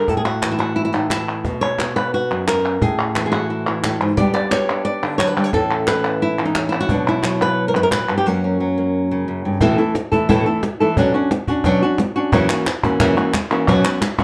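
A straight 4/4 pulse at 177 BPM drives this fiery, dramatic flamenco passage cut from a longer piece, where an up-front fingerpicked flamenco guitar carries the melody between F#2 and D5 in plate reverb over a snappy cajon with snares, played with soft hands, and crisp palmas hand claps that drop out at 8.3 seconds for a break and return at 12.3 seconds, while the chords move from A5 and B5 through G and F# to a closing F#7 and F#sus4 in a moderate studio room.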